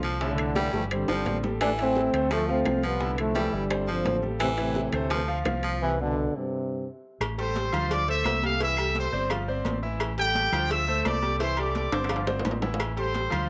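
Driving and fiery, this salsa cut in A minor runs at 172 BPM, with a bright, brilliant grand piano, a round, punchy fingered electric bass, and a bed of bongos and cowbell, ringing metal-shell timbales with agogo bells, high-tuned congas and woody claves sitting under a moderate spring reverb. An up-front, close-miked trombone section carries the melody from 0.2 seconds while a raspy, growling baritone saxophone adds a second line, both dropping out around a stop that begins at 5.8 seconds. At 7.4 seconds a vibrato-laden trumpet section takes over the lead, high and present with a slapback echo, as a drum fill punctuates the groove near the end over chords like Am7, Dm7, C69 and G7sus4.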